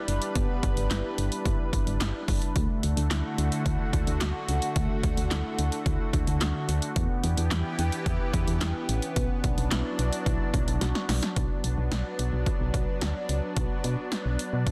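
A lush, thick pad of detuned sawtooth and square-wave voices opens this melancholic, cool synth-pop excerpt, its slow-attack chords shimmering through chorus and phaser over a G, D, Em, Bm progression. Almost at once a punchy analog drum machine arrives up front with kick, snare, hi-hat and handclaps. The drums are overdriven and carry a short room on the snare, claps and hats. Beneath them a round, dark FM bass with a fast attack and decaying notes anchors the low end. A close-miked handpan of stainless steel, played with soft fingertips, adds mellow, ringing, meditative arpeggios through a digital delay until 11.3 seconds. A drum fill at 10.8 seconds leads into a new section, where pad, bass and drums carry on under light digital ambience in a dense, heavily limited modern master.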